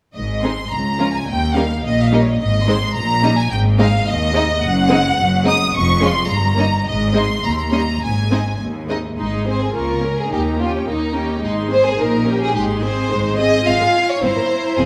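Graceful and lively, this quick classical-period movement for string orchestra moves at 107 BPM in a straight 2/4, set in A-flat major and cut from a longer piece. First violins carry the melody up front with a focused, vibrato-rich tone, while a second violin section adds a smooth, even line beneath them. Violas fill in the accompaniment with a lush sound, and the cellos, close and focused, share the bass with double basses whose light vibrato gives a smooth top to the lowest register. The harmony circles through tonic and dominant-seventh chords with inversions, and the opening phrase returns at 9.2 seconds before turning toward F minor and C7 near the end. A scoring-stage reverb with a 1.6-second tail surrounds the ensemble in a generous, wet space.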